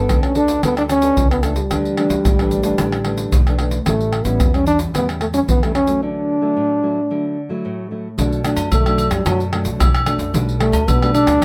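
Samba and choro at 111 BPM in 4/4, joyful and lively, this short cut from a longer piece sits in D major before turning to B minor at 8.2 s, where the mellow, close-miked trombone takes a jazz-style solo full of vibrato and scooped notes. Beneath it, a thumb-plucked nylon-string guitar with fresh strings adds warm classical accompaniment, and a woody, dark pizzicato upright bass anchors the low end. An up-front, small-room percussion group of egg shaker, deep surdo, pandeiro, tamborim and agogo bells, played with hard hands, joins at 0.1 s, a break arrives at 6.0 s, and light reverb with detailed miking frames the whole.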